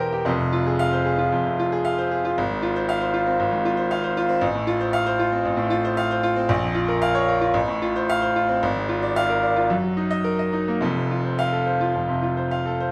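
Passionate and agitated, this short excerpt from a virtuoso classical piano study moves in F minor at a flexible 104-120 BPM in 4/4, its rubato feel pushing and pulling the pulse. A bright baby grand piano plays alone throughout the 12.9 seconds, ranging from a deep E1 up to G5. Its tone is brilliant and open with a long sustain, and it sits up front in the sound, touched by light reverb. The harmony begins on F minor, passes through Bb minor around 6.5 seconds and an Eb minor over Gb at 9.7 seconds, then lands on a major F chord at 10.8 seconds. It closes as a fragment cut from a longer piece.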